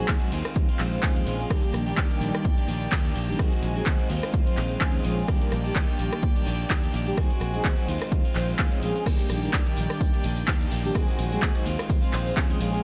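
This dry, close recording has little reverb. It is a short cut from a longer filtered disco house track in Eb major at 127 BPM, with a light swing on the 16ths and a funky, feel-good mood. An up-front electronic kick hits punchy and overdriven, and a dry analog drum machine supplies crash, handclaps, hi-hat, rim click and shaker with overdrive, studio reverb and sidechain pumping. A fingered electric bass, direct and amped, holds the low end, while a mellow synth brass patch, round and dark with chorus and phaser, carries the accompaniment; both pump with the sidechain. A slightly broken-up, picked electric guitar plays a riff, and a background chamber string section with gut-string tone and light vibrato sustains reedy chords; both parts carry vintage 12-bit sampler grit and sidechain pumping. The harmony cycles through Dbmaj7, Ebmaj7 and Ab7, and a tambourine joins quietly in the background at 9.1 s.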